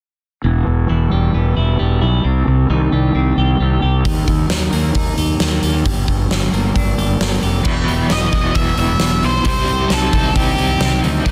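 A dense, heavily limited modern mix with light reverb and a small room ambience frames this brooding, cathartic fragment of quiet-loud alternative rock cut from a longer piece. It opens on a bright, twangy, compressed twelve-string electric guitar picking clean arpeggios over an up-front fuzz bass, fingered and overdriven with a growly, warm tone, as the chords move through Em, Cm, D# and Gm. At 4.1 seconds a huge arena drum kit arrives with a punchy kick, a medium-tuned snare, hi-hat and bright crash cymbals, sounding acoustic and hall-like at the front of the mix. The texture thickens at 7.6 seconds when a bright, cranked stack guitar joins with a picked, overdriven riff colored by tremolo. At 8.1 seconds a dark octave-fuzz lead guitar adds a picked, distorted melody high above the returning Em and Cm chords.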